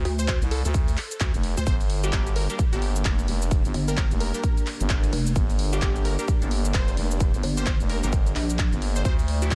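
Gritty and swaggering, this bass house excerpt struts at 130 BPM in G minor with a swung 16th feel, moving from Dm to Gm as a punchy, up-front electronic kick and a layered dance kit of handclaps, hi-hat and shaker drive beneath a growling, thick FM bass and a heavy, detuned, pulsing pluck wobble bass, both overdriven and pumping against the sidechain. A bright, catchy unison lead with phaser and diffuse ambient delay enters almost at once. A nasal, band-passed chord stab arrives at 2.0 seconds and a deep, moody analog pad with chorus at 2.5 seconds, both sitting in the background of a dry, close mix.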